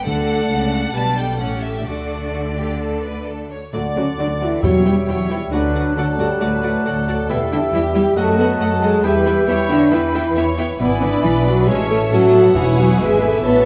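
A quick classical-period orchestral movement in D major at 135 BPM, cut from a longer piece, moves with a spirited, graceful character and a flexible, rubato feel. The strings open together: a rich, smooth violin section carries the melody while a second, clear and intense violin section adds its own line, a lush viola section sits in the background with accompaniment, and a focused cello section and a dark, expressive double bass section with portamento share the bass from 0.1 seconds. Timpani played with medium mallets on calf heads strike briefly in the background at 0.1, 4.6 and 12.5 seconds. At 3.7 seconds the winds join, with a distant, roomy oboe, an airy flute group, a background clarinet and a punchy bassoon adding lines and accompaniment. A mellow French horn section with a soft attack holds sustained chords and is the loudest part. The harmony moves from D through G/B and A7, then turns through diminished chords, E minor and E7/G# toward A and E, all set in a wet recital-hall reverb with a gentle, rolled-off top end.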